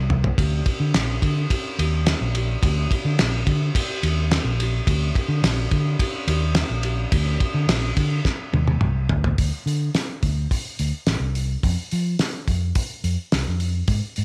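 Psychedelic rock with a dark, hypnotic mood, this short excerpt moves at 107 BPM in a straight 4/4, and it is tuned slightly sharp of standard pitch. A fingered electric bass carries the low end, its amped, round tone ranging from A1 to F3 throughout. Beside it sits an acoustic drum kit, cloth-damped and thuddy, heard up front in a small room with a fat snare, a tight kick, dark cymbals and a rolled-off top across hi-hat, ride and toms. The kit opens with a quick fill, and another fill at 8.3 seconds leads into a new section at 9.4 seconds. The sound stays dry, with little reverb, until the cut at 14.2 seconds.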